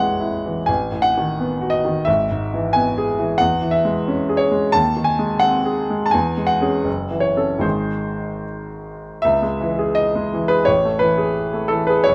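Bittersweet and passionate, this brief excerpt from a romantic character piece for solo piano moves in 2/4 with a free, rubato feel, its tempo drifting between 73 and 93 BPM. A clear grand piano carries everything alone from 0.0 to 12.1 seconds, spanning from F#1 up to A5, its smooth, vintage tone placed up front with a short sustain. The harmony opens in E major on Amaj7 and B7/A before settling into C# minor from 3.4 seconds, passing through G#7/D#, F#m7 and G# along the way. A new section begins at 9.2 seconds on C#m, and the fragment ends on an open A5 sonority. Light reverb gives the instrument a modest sense of space around its clear sound.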